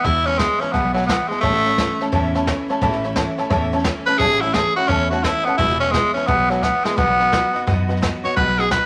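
Rockabilly in E major at 173 BPM with a swung, rollicking and rowdy feel, this short section, cut from a longer piece, features a raspy, gritty tenor saxophone out front with vibrato carrying the melody over a jangly, detuned honky-tonk upright piano, a full-bodied picked steel-string acoustic guitar, a woody, thumpy pizzicato upright bass and a jazz brush drum kit with a boomy kick, all in moderate studio reverb with vinyl crackle and a brief drum fill at 6.6 seconds.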